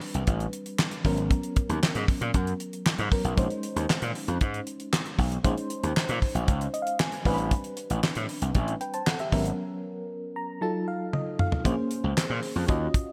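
A straight 4/4 groove drives this slick, danceable early-eighties boogie funk excerpt, with a dry, damped 70s drum kit of fat snare, tight kick, handclaps, hi-hat and toms under gated reverb sitting up front beside a gritty, overdriven slap bass, while a dark FM electric piano with tremolo and phaser plays accompaniment over mostly minor-eleventh chords and adds fills at 6.5 and 10.1 seconds, the second during a break that closes with a drum fill at 11.1 seconds, all in a bright digital 1980s production with small room ambience.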